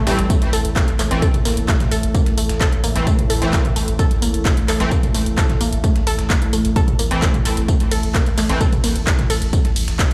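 A heavy electronic kick drives this hypnotic, industrial slice of peak-time techno at 130 BPM in a straight 4/4, sitting up front from 0.3 seconds, with a layered techno kit of handclaps, hi-hat, ride cymbal and toms, its hats, ride and toms pumping under sidechain and carried by the sound of a large room. Behind it, a gritty, compressed sampler-style kit adds hi-hat, a medium-tuned snare and tambourine through high-pass filtering, tucked into the background. A deep, thick sub bass holds A1 with overdrive and a low-pass filter, while a detuned sawtooth unison pluck plays a punchy riff between G3 and A4, its ring-modulated, noise-laced tone decaying into digital delay. A bright, edgy sync-sweep polysynth punctuates with nasal, sweeping stabs from E3 to C4, thickened by ensemble chorus and delay, and an evolving analog drone with pulse-width modulation, chorus and phaser hangs in the background in A phrygian. 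Heard as if on a big sound system in a bare room with large studio reverb, this 10.1-second cut from a longer piece stays in a single driving section.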